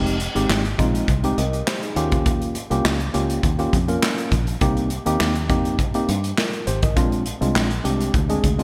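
Early-eighties boogie funk at 102 BPM in F minor, this short cut from a longer piece carries a funky, late-night mood in a straight 4/4 feel. A worn, slightly out-of-tune tine electric piano sits up front with light overdrive, its tone coloured by its built-in speakers as it moves through Fm7, Eb7, Cm7 and Bb7. Underneath, a fingered electric bass holds down the low end with a dark, round, foam-muted sound, captured both direct and amped. The drum kit comes in at 0.1 s, with a boomy kick, a medium-tuned snare, hi-hat and handclaps pushed up front in a pumping studio room treated with gated reverb. A lush hall reverb and bright, 1980s-style digital production give the whole piece a glossy, spacious finish.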